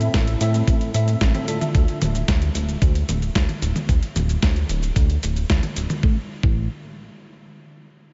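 Danceable and nostalgic, this short italo disco excerpt moves at 112 BPM in a straight 4/4, set in A minor and tuned slightly sharp of standard pitch. A bright tine electric piano plays clean stabs for the first 2.0 seconds, carried by ensemble chorus and tape echo. Up front, a glossy, retro synth bass built from pulse and sawtooth waves, with pulse-width modulation, a plucky filter and chorus, holds the low end until 6.7 seconds. A thumpy electronic kick drum sits prominently in the mix, while a dusty soul sampler-style kit adds cabasa, hi-hat, a medium-tuned snare and toms; both drum parts are gritty, compressed and re-recorded in a large room. An A minor chord opens the excerpt, and the chords drop out at 1.7 seconds. The kit stops at 6.0 seconds as the piece moves into a new section, and the whole sound stays dark on top under a light reverb.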